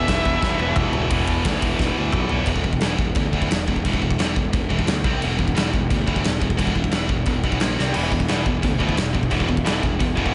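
Set in a small room with light reverb and a softened top end, this heavy, relentless metal excerpt pushes forward at 175 BPM in straight 4/4, moving through E5, C5 and A#5 chords. A warm high-gain lead guitar with distortion and digital delay sounds a short E5 melody through the first 0.8 seconds, while a bright heavy high-gain guitar with slapback echo plays a distorted riff throughout, and a tight distorted guitar adds its own riff in the background until 2.5 seconds, returning at 7.9 seconds. Beneath them sits a growly, overdriven fuzz bass, and an up-front big rock kit with punchy kick, medium-tuned snare, toms and sparkling china, crash and ride cymbals fills out the sound, with several drum fills along the way.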